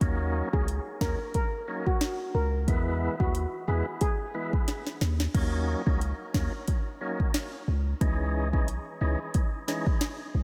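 A deep, boomy 808-style bass sits up front in this hypnotic, tough dancehall excerpt at 90 BPM in Eb phrygian, joined by an electronic afro-pop kit with a deep kick, a sharp snare and metallic hats, a thick, lightly overdriven tonewheel organ with key click and fast rotary speaker, and a shimmering steel pan melody with tape echo that plays from 0.5 to 4.5 s, all soaked in a lush hall reverb, with a drum fill at 4.7 s leading into the second section.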